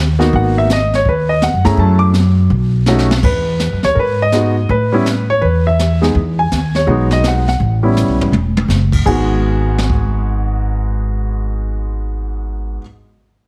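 A brisk 165 BPM swing in 4/4 drives this late-night jazz piano trio in G# minor, cut from a longer piece, with a woody pizzicato upright bass setting the groove at 0.0 s before the concert grand and brushed drum kit join at 0.2 s. The intimate, up-front piano carries the melody with audible action noise and deep low notes over chords moving from G#m7 through Emaj7 and A9 back to G#m7. The drums add dark cymbals, a high-tuned snare, a boomy kick and a couple of fills before dropping out at 10.0 s, all set in light reverb with a heavily compressed, radio-like sound.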